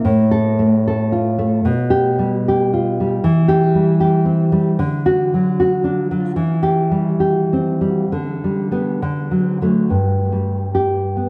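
This romantic solo classical guitar piece has a tender, nostalgic mood, played in 2/4 with a free, rubato feel that lets the time breathe. The nylon-string guitar carries everything alone across the 11.3-second excerpt, ranging from G2 to A4 with a full-bodied, thumb-plucked tone that sits up front. Its deep, dark classical voice is colored by tape echo and set in a moderate scoring-stage reverb, giving the dark, warm production some space. The harmony moves through F/A, G7/B, C/E, D and G/D before settling back on D, then the chords fall away at 9.9 seconds as the music enters a brief new passage. Tuned slightly below standard pitch at A4 = 437 Hz, the recording feels like a fragment lifted from a longer work.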